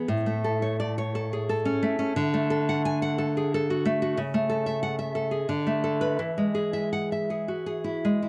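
A tender romantic piece for solo classical guitar in A major, moving in 3/4 at about 88 BPM with uneven, rubato beats, heard in a brief 8.3-second fragment of a longer work. The fingerpicked nylon-string guitar sits up front with a warm acoustic tone, audible finger squeaks and a touch of tape echo, ranging from A2 to G#5 as it moves through A, D, A/C#, Bm7/D and E. The close, dry 1970s-style studio sound carries only light reverb, keeping the guitar intimate and present.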